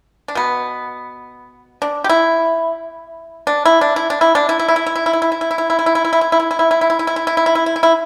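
In free time, this short cut from a longer Chinese traditional piece has an elegant, contemplative mood, with a solo pipa playing from 0.3 to 7.9 seconds across a range of B2 to G4. Played with fingerpicks, the acoustic pipa sits up front with a percussive, dry attack and a warm body. Around it, a church or concert hall adds a wet scoring-stage reverb that lingers for about 1.6 seconds.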